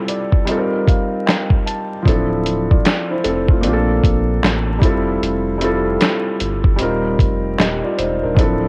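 Lo-fi hip hop at 76 BPM with a 16th-note swing, this short excerpt from a longer piece feels nostalgic and mellow. A felt-muted upright piano opens with a fill during a brief break, its soft, intimate tone dulled by a low-pass filter and carrying audible action noise up close. The sampler-style drum kit, pitched down, compressed and muffled with a cassette tape character, sits up front with a thumpy kick, a medium-tuned snare, hi-hat and handclaps. A deep, saturated sine sub bass joins at 2.1 seconds, its fast attack giving way to thick sustained notes. The harmony moves through Eb6, Dm7, Bbmaj9 and Fmaj9 before returning to Eb6. Light reverb and vinyl crackle frame the home-recorded cassette sound.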